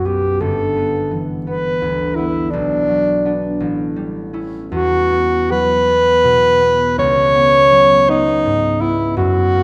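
A clear alto saxophone carries the melody up front in a classical style, singing a luminous, pastoral line over a concert harp whose mellow, fingerpicked accompaniment rings beneath it. This impressionist duo moves in a flexible, rubato 6/8, its harmony drifting through G6, Bm, A9, Esus2 and finally C#m11 at 7.0 seconds. A moderate scoring-stage reverb surrounds the pair in this brief passage cut from a longer piece.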